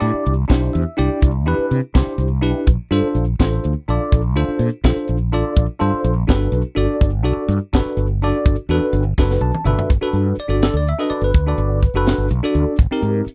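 A dry, close 1970s-style studio sound frames this funky, slick slice of electric jazz fusion in G major, moving at 83 BPM in a straight 6/8. A bell-like tine electric piano with a phaser drifts through Cmaj9, Bbmaj9, Gmaj9 and Abmaj9 over a round, dark fretless bass and a tight funk kit with a high-tuned snare, all three parts up front and playing throughout. Electric piano and drum fills arrive together at 9.2 seconds, leading into a new section at 9.9 seconds before the cut.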